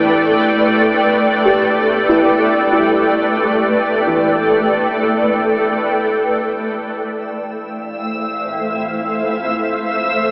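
A blurred, detuned granular cloud pad holds sustained chords up front in this spacious, melancholic ambient excerpt, shifting from Em7 to Dm7 at 6.3 seconds, while a soft felt-muted upright piano plays dark, boxy arpeggios through analog delay until 8.3 seconds and a bright, reversed texture swells in at 7.4 seconds, the mix soaked in lush hall reverb with a dreamy cassette-tape and AM-radio sound.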